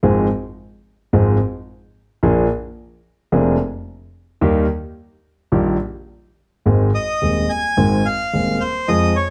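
Tango fragment in Ab major, sultry and dramatic, at 108 BPM with a rubato feel, where a warm, intimate concert grand piano with deep bass and audible action noise accompanies through Fm/Ab, Bb7, Eb and Ab, joined at 6.9 s by a reedy, bright, close-miked bandoneon that carries the melody up front, all set in a dark production with moderate large studio reverb.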